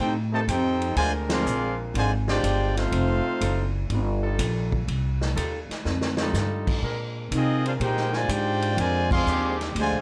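Lightly reverberant and full of joyful energy, this big band swing excerpt at 123 BPM swings over F9 and Bb9 chords, with a clear, smooth-topped trumpet section carrying the melody alongside a vibrato-tinged, warm trombone section on the second line; both pause at 3.7 seconds and return near 7.4 seconds, while a bright, soft-attacked trombone section holds sustained chords, an up-front, woody, growly pizzicato upright bass anchors the bottom, and a distant, roomy drum kit with a boomy kick adds a fill at 5.8 seconds between band accents.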